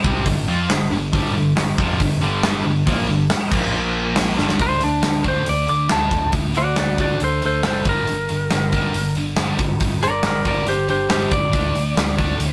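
A heavy, driving hard rock passage opens with a double-tracked high-gain guitar riff and a sludgy overdriven guitar tucked in the background, over growly picked bass and an up-front gated 80s drum kit with punchy kick and bright cymbals; after a drum fill at 4.4 seconds, the sludgy guitar drops away at 4.6 seconds as a twangy, compressed lead guitar takes a solo, all captured in a rough rehearsal-room sound with moderate reverb.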